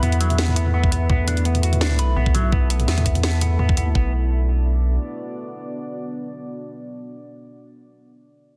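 Heavy and spacious, this half-time drum and bass excerpt opens straight on a drop, with a swung sixteenth-note feel driving over a pad that moves from Esus4 to B minor at 4.0 seconds. A saturated sub bass sits thick and up front, carrying the low end until 5.0 seconds, while a knocking, layered electronic kick enters at 0.8 seconds. The drum kit adds a cracking snare, hi-hat and toms bathed in studio reverb, and a bright, twangy electric guitar with an envelope filter picks out clean arpeggios roughened by vintage 12-bit sampler grit and digital delay. Behind them, a deep, moody pad of detuned sawtooth and sine voices with a sub octave swells in slowly, pumping against the beat through chorus and reverb and lingering alone as the other parts fall away. A very quiet, tempo-synced gated texture pulses high above, and the dense, heavily limited master wraps the whole in a light digital ambience.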